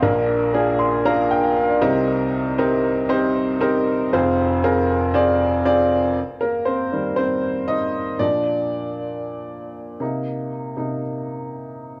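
Anthemic and warm, this short pop fragment is cut from a longer piece and moves at a straight, steady pulse in four. A clear upright piano carries everything on its own, its woody, smooth, vintage tone ringing with long sustain and sitting up front, touched by a delay. Early on the piano slips in a brief fill between 0.5 and 2.1 seconds, then from 6.2 seconds it takes a solo that runs to the end at 12.0 seconds. The harmony passes through Bb, Cm7 and Fm before settling onto Eb6 and cycling back through Bb and Cm7. The sound carries a moderate large-studio reverb and the worn, warbling character of old cassette tape, with warbly pitch drift and a dulled top end.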